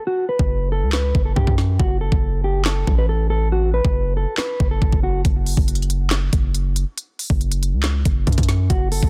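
A half-time trap groove sets a brooding tone in this short cut from a longer hip hop piece, with a mellow, clean, fingered electric guitar carrying a dark melody through a low-pass filter and tape echo from the start until 5.2 seconds, then returning briefly near the end. From 0.4 seconds a punchy, heavy 808-style bass, a sine tone with a noise layer, fast attack and decaying tail, sits up front beside an electronic trap kit of knocking kick, woody snare with soft clipping, crisp hi-hats and handclaps, all with a tape-warm sheen. The mix is dry, dense and heavily limited.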